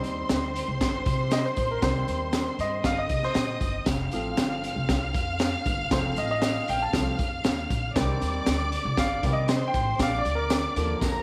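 A light reverb settles over this short, driving cut from a longer 1960s-style soul piece, with the crunchy breakbeat kit sitting up front and a tambourine jingling in the background. The grand piano carries a polished, present solo from start to finish, playing over chords that move from Cm to F, back to Cm, and on to Bb. Beneath it, the upright bass is plucked with a woody, thumpy tone from gut strings. The saturated, gritty drums have a punchy kick, a high-tuned snare and hi-hat in a pumping room with a rolled-off top, closing on a fill at 11.0 seconds. A clear studio string section holds a lush, bowed second line with vibrato and a smooth top, adding urgency to the straight, uptempo groove.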